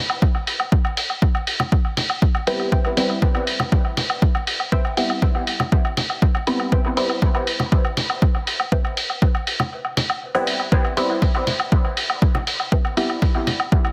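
A straight 4/4 pulse at 120 BPM drives this hypnotic, cavernous dub techno excerpt: a punchy, overdriven analog kick sits up front beside a muffled, pitched-down sampler hi-hat and layered electronic woodblock and congas that pump and trail dub echo, while two muted, detuned sawtooth chord stabs on a Gadd11 enter at 2.5 seconds, one higher and evolving through a moving notch, phaser and subtle chorus, the other lower with a square-wave sub octave sitting in the background, both pumping and echoing, as the kick drops out from 9.7 to 10.7 seconds, all under light reverb and a heavily compressed, radio-like sound.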